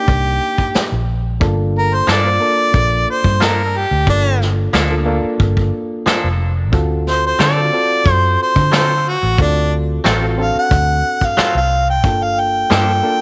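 Smoky and mournful, this straight-eighth soul blues excerpt puts an up-front, overdriven harmonica solo with light vibrato and scooped notes over a reedy electric piano, a dark, foam-muted fingered electric bass with transformer saturation, and a vintage brush drum kit with a punchy kick and rolled-off top, while a twangy, clean electric guitar adds tape-echoed stabs from 2.1 s, set in a small room with light reverb.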